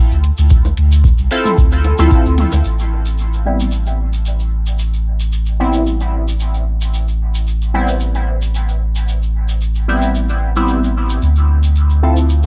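A juicy, warbling polysynth with detuned, resonant stabs, chorus, phaser and dub echo enters at 1.3 s over a Dm9 chord in this cavernous, meditative dub techno piece at 112 BPM with a light swing, where a round, up-front sub bass pumps beneath a grainy shekere while a deep electronic kick, metallic filtered hi-hat, and background overdriven bongos and toms all drop out by 2.6 s, leaving the bass, shekere and stabs to drift on through a dark digital ambience.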